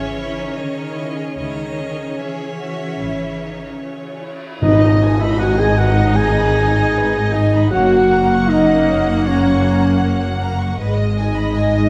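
Moving with an uneven, rubato pulse around 76 BPM in 4/4, this bittersweet, longing orchestral film cue opens on a C#madd9 chord, with a lush symphonic violin section and a distant solo violin carrying the melody over a chamber violin line, a smooth viola section, mellow sustained French horn chords, and a bass of focused cellos and clear double basses. A very quiet cymbal swell and tam-tam arrive at 1.4 seconds, and at 4.6 seconds a hard-mallet timpani accent marks the turn to G#m as a pure, crisp-attacked flute and a roomy solo oboe join with a second line. The full ensemble sits in a moderate scoring-stage reverb as the harmony moves through F# and back to G#m, in a passage cut from a longer piece.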